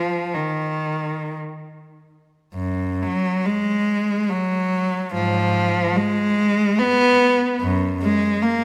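A classical excerpt for unaccompanied cello, this short passage cut from a longer piece carries a mournful, lonely mood in a free, expressive rubato that moves in 3/4. A single bowed cello plays throughout, its focused, clear tone sitting close and up front with vibrato. The line stays in the instrument's lower and middle register, from F#2 up to B3, giving the phrases a dark, sombre weight. A brief opening section gives way at 2.5 seconds to a second, longer section that carries the music to its close at 8.6 seconds. The cello rings into a moderate concert hall reverb that lends the lone voice a sense of space around its intimate presence.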